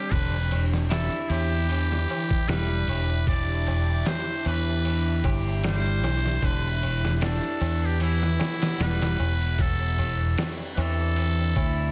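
Cinematic and melancholic, this short trip hop excerpt moves at an unhurried, lightly swung pace over a chord that sits on Em7 before shifting to D9sus4/E near 9.6 seconds. A trumpet with a metal mute carries the melody, its tone buzzy and raspy with vintage sampler grit and tape echo trailing behind it. Beneath it, a deep, moody ambient pad holds sustained chords with chorus and its own reverb, while an electric guitar at the edge of break-up picks twangy arpeggios through a delay. A bright, growly fingered electric bass sits up front, joined by a gritty, pitched-down sampler-style drum kit with a thumpy kick, medium-tuned snare and ride cymbal, re-recorded in a large room. High-tuned, ringing tabla adds a quiet layer of percussion in the background, all within a light reverb and a dense, heavily limited modern master.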